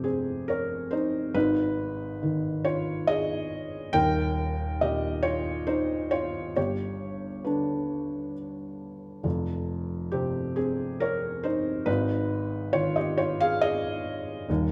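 A felt-muted upright piano plays solo through this intimate, reflective neoclassical minimalist excerpt, its soft, mellow tone sitting up front in a moderate large-studio reverb as it moves rubato in 3/4 at around 69 BPM, ranging from Eb1 to G5 over chords of F5, Abm, Eb and G across 14.7 seconds cut from a longer piece.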